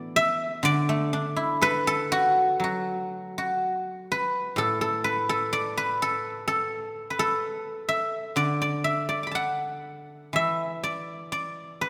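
A rubato pulse around 62 BPM in 2/4 gives this short passage of Chinese traditional solo plucked-string music an elegant, flowing mood, set in the D gong mode. A lone guzheng, played with fingerpicks, carries everything from 0.0 to 11.9 seconds across a range from A2 to D6, its silvery, ringing tone sitting up front. A moderate concert hall reverb surrounds it, and a brief opening idea gives way at 2.6 seconds to a longer second section that continues as the recording is cut from a longer piece.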